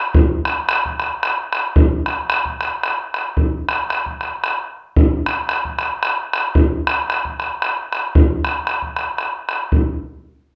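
A moderate studio reverb gives this short cut from a longer Celtic folk piece a roomy, open sound, with the boomy acoustic bodhran sitting up front. The lone bodhran plays from 0.1 to 10.0 seconds at 113 BPM in 3/4, with a light swing on the eighth notes. The mood is spirited and wild.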